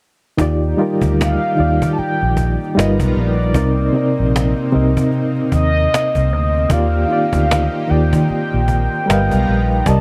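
Swung sixteenths at a slow 76 BPM give this sultry, late-night neo-soul groove its loose pulse, carried by a snappy cajon with snares and a round, punchy, foam-muted electric bass sitting up front. A reedy electric piano with fast tremolo plays the accompaniment over a thick, warbling unison pad with chorus, moving through Ebmaj7, G7alt and Cm9, and a mellow horn-like synth lead with chorus, phaser and vibrato enters at 1.2 seconds with a sustained, soft-attacked melody. The sound is dry and close, like a 1970s studio, in this fragment cut from a longer piece.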